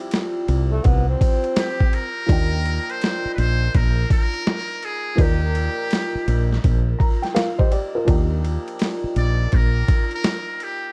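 A swung boom bap groove of gritty, overdriven sampler-style drums with thumpy kick, snare, hi-hat and ride carries this cool jazz-hop excerpt, where a round, punchy fretless bass sits up front beneath a woody, slightly detuned upright piano that adds a fill from 6.6 seconds, a breathy tenor saxophone murmurs briefly in the distance near the start, and a buzzy, metal-muted trumpet with tape echo carries the melody from 1.6 seconds, all wrapped in light reverb and worn, warbling cassette-tape pitch drift.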